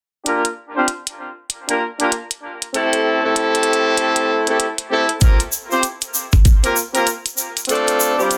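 Playful and swaggering, this glitch hop excerpt swings its sixteenths as a clear horn section punches out stabs with light vibrato and octave doubling, roughed up by vintage 12-bit sampler grit, sidechain pumping, a low-pass filter and dub echo over chords moving from Gm7 through Am7 and C7sus4 to Dm7. Clicky, tape-tinged electronic hi-hats run throughout in a small room, while a layered, knocking electronic kick sits up front from 5.2 to 6.6 seconds and a grainy, bright egg shaker joins at 5.2 seconds. The mix has moderate studio reverb and a dense, heavily limited modern master.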